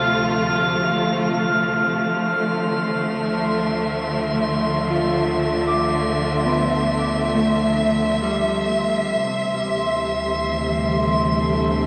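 Bathed in an enormous, wet reverb with a very long tail, this short ambient passage, cut from a longer piece, feels reflective and melancholic as it floats in free time. A bowed studio string section sits up front with sustained chords, its expressive vibrato and portamento softened by a low-pass filter and a shimmer reverb. Beneath it, a dark, clean electric guitar plays fingered arpeggios through a diffuse delay, while a glassy texture of drifting overtones hovers high above with chorus and shimmer. A warm, round sine sub bass fades in from 2.2 seconds, grounding the harmony as it moves from F over D to D minor with an added ninth and finally to C over D. In the background, a nasal, evolving analog drone with chorus surfaces briefly around 1.7 seconds and returns at 10.2 seconds to close the passage.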